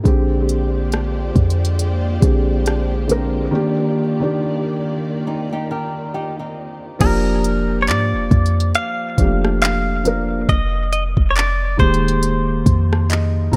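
A dark, felt-muted upright piano with audible action noise and dub echo carries this late-night, moody contemporary R&B excerpt at 69 BPM in F dorian, over a deep, boomy 808-style bass, a soft, smooth electronic drum kit with handclaps and rim clicks, and lush bowed strings with sidechain pumping, while a fingerpicked flamenco guitar adds squeaky arpeggios from 5.3 s, a bright, twangy direct-recorded electric guitar takes the melody from 7.0 s, and a piano fill arrives at 12.7 s in an echo-heavy small room.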